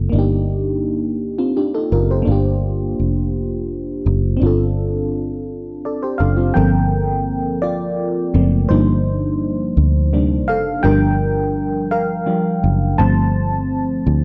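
Yearning and late-night, this slow six-eight R&B excerpt in G minor moves at 56 BPM. A mellow FM electric piano with a soft, warbling vintage tone, treated with chorus and phaser, carries the lush extended chords from the start and takes a solo from 6.5 seconds, over a round, foam-muted fingered electric bass that sits up front. The sound is that of a dry, close 1970s-style studio recording with digital ambience, cut from a longer piece.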